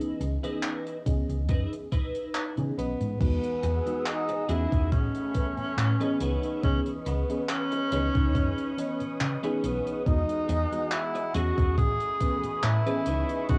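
A warm tenor saxophone with vibrato and scooped notes takes the up-front, jazz-style lead from 2.8 s in this melancholic, woozy vaporwave excerpt, over a round, dark hollow-body bass with tube saturation, a thumpy sampler-style kick entering at 1.1 s, a big-room acoustic kit with bright cymbals, hi-hat and handclaps, a twangy, clean twelve-string electric guitar riff through chorus and delay, a mellow FM electric piano coloured by chorus, sampler grit and cassette tape, and a silky string machine with phaser arriving at 3.2 s in the background, all captured in a small, cassette-recorded home room.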